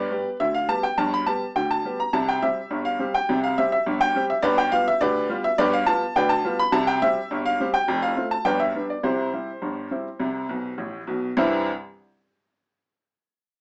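A straight 2/4 pulse at 104 BPM drives this jaunty, lively ragtime piano passage in C major, cut from a longer piece and tuned to A4 = 443 Hz. A bright, woody upright piano plays solo and up front from 0.0 to 11.7 seconds, ranging from F1 to B5 over chords that move from G to C, G7 and back through F and G to C, with a fill at 10.5 seconds just before the next section begins. Light reverb and a small speaker sound shape the recording.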